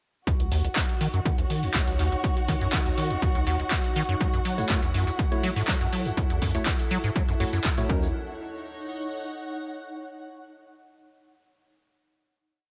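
At 0.3 s a gritty, trippy acid house groove in Eb minor pentatonic starts at 122 BPM: an overdriven, up-front four-on-the-floor kick and a punchy analog drum machine with hats and claps, both re-recorded in a large room, drive a rubbery, resonant acid bass riff whose 12-step loop of accents and slides drifts against the bar, while a veiled, con sordino string section holds a high Gb4 with sidechain pumping. A cloudy, evolving granular pad with built-in reverb enters with slowly shifting chords over changes moving from Ebm7 to Gbm7, followed by a grainy egg shaker in hand-played sixteenths and hollow, wave-folded organ stabs with chorus and dub echo, one syncopated chord shape moved in parallel. The groove stops at 8.1 s, leaving the pad to sustain a final note until 10.1 s in light digital ambience.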